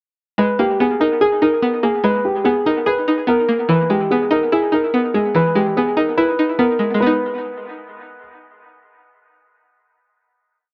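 Tense and dark, this short, complete hip hop piece moves with a half-time feel. A mellow, boxy grand piano sits up front, playing a looping melody in a narrow upper range that repeats like a sampled phrase, softened by a low-pass filter and trailed by dub echo. Beneath it, a twangy, string-like resonator pluck with a warbling, vintage character runs a rising and falling arpeggio in eighths, its fast attack decaying through chorus, a filter sweep and more dub echo, with a noise layer underneath. The hook cycles from G#madd9 to Emaj7 before settling on a final G#m chord at 7.0 seconds. The piano falls away at 8.2 seconds, leaving the pluck to ring out until 10.7 seconds in an echo-heavy mix with light reverb.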